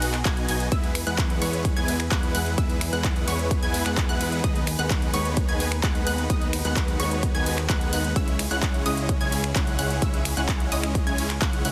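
This uplifting, triumphant festival progressive house excerpt opens at 129 BPM with everything arriving together: huge, bright detuned supersaw chords carry the riff with tape echo, a fat, nasal saturated analog bass pumps beneath, and a punchy overdriven electronic kick sits up front from 0.3 seconds. Snaps, handclaps, metallic hats and ride from an overdriven big-room kit drive the groove, while a lush unison pluck arpeggiates high with tape echo and a smooth symphonic string section holds sustained chords with vibrato in the background, all but the drums breathing with sidechain pumping. The chords move from B through E and G#m/D# to C#m in a dense, heavily limited, nearly dry mix.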